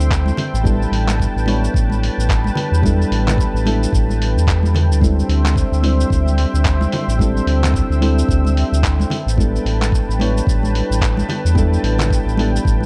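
A round, deep analog bass with tube saturation sits up front in this blissful sunset chillout piece at 110 BPM, its 16ths swung, moving between A9sus4 and D9sus4 across a 12.9-second passage from a longer track. A gritty, thumpy electronic kick and a dusty soul sampler-style kit of handclaps, hi-hat and shaker, both compressed and tape-colored, support the groove, while bright vintage congas sit in the background. Soft, mellow electric-piano-like synth keys with chorus and tape echo, plus a lush, thick, warbling unison pad carrying chorus and 12-bit sampler grit, float in light digital ambience within a dark, warm production.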